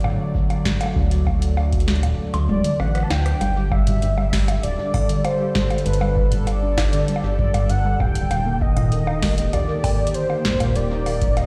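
A rubbery, hollow square-wave bass with tube saturation sits up front in this playful, glitchy IDM excerpt at 98 BPM, entering at 1.0 seconds beneath a mellow, detuned analog pad holding sustained chords, a booming drum machine of crisp snare, metallic hats, bongos, rim clicks and toms, and a deep electronic kick. A velvety synth lead with vibrato, chorus and tape echo carries the melody from 2.5 seconds, the kick drops out briefly as a drum fill plays, and at 3.4 seconds a warbling, lo-fi pluck with ensemble chorus adds dark arpeggios in the background as the harmony moves from D to Gsus2 and later Eb. The mix sounds played back on a big sound system in a bare stone room, with light reverb and a digital ambience.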